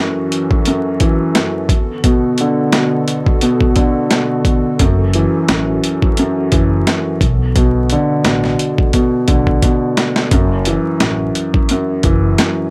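Overdriven boom-bap drums with a thumpy kick and a compressed, small-room grit lead this tough, gritty hip-hop groove at 87 BPM in F# minor, swung over a dark, intimate concert grand piano whose action noise is audible, a hollow, flute-like pad sitting softly in the background, a woody, growly pizzicato upright bass entering at 4.8 seconds, a drum fill at 8.9 seconds, and a layer of vinyl crackle.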